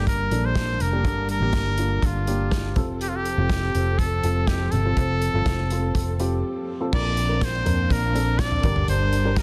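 Piano-driven pop in Bb major at 123 BPM, this short, uplifting and anthemic excerpt is cut from a longer piece and led by a bright, up-front trumpet melody with scooped notes, over a dark, woody upright piano and lush, bowed strings holding sustained chords in the background. A round, foam-muted vintage electric bass sits prominently beneath a loose indie drum kit with a tight kick and rolled-off top that enters at 0.1 seconds, moving through Gm and F before a brief break at 6.4 seconds. A new section lands on Bbadd9 at 6.9 seconds, all set in light reverb with a dense, heavily limited modern master.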